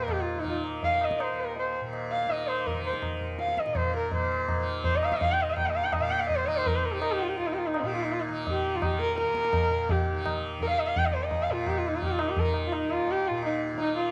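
Hindustani classical music in raga Bhupali with a serene, devotional mood, where a bright, softly plucked tanpura drone buzzes and shimmers beneath high-tuned, ringing tabla heard in a small room, while an up-front, dark and woody bowed sarangi with sympathetic strings carries the melody with light vibrato and gliding portamento, the pace quickening across this brief cut from a longer piece under light studio reverb.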